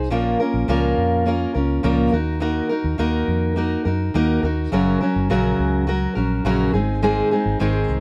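A moderate studio reverb gives this short acoustic pop passage a soft sense of room, with the fingerpicked steel-string acoustic guitar sitting up front and carrying a full, auditorium-style body along with audible finger squeak. Reflective and tender in mood, it moves at 104 BPM in a straight 4/4 feel, tuned to A4 = 442 Hz. The guitar provides the accompaniment across the whole eight seconds, spanning a range from Gb2 to C5. Beneath it, a vintage foam-muted fingered electric bass plays for the full length with a dark, round, punchy amped tone. The harmony moves from Bbm to Ebm, then on to Gb and Ab, in what is clearly a fragment lifted from a longer piece.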